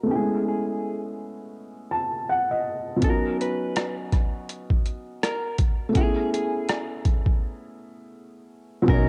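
A dreamy, mellow lo-fi hip hop fragment opens on a soft, intimate felt-muted upright piano with audible action noise, joined almost at once by a dark, clean electric guitar carrying the melody, both filtered and tinged with cassette tape under a filter sweep and light reverb. After a brief piano fill, a gritty, pitched-down boom bap sampler-style kit with a thumpy kick, hi-hat and rim click comes in up front at 3.0 seconds, its overdrive adding crunch to the swung groove. Following a break, the hi-hats drop out and a round, foam-muted vintage electric bass appears at 8.9 seconds just as the fragment cuts off.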